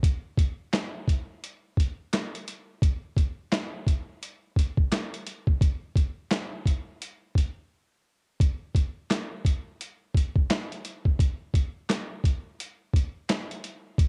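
A swung 4/4 groove at 86 BPM, with a 61% swing on the sixteenths, sets a moody, dark hip hop feel in this short cut from a longer piece. The only part is a boom bap, sampler-style drum kit of kick, snare, hi-hat and handclaps, playing throughout its 14.1 seconds. Its sound is compressed, pitched down and gritty, with a thumpy kick and a medium-tuned snare. The kit has the character of drums re-recorded in a large room and run through cassette tape, and it sits up front in the mix. The overall home-cassette recording carries little reverb, and a break at 7.7 seconds leads from the opening section into a second one at 8.4 seconds.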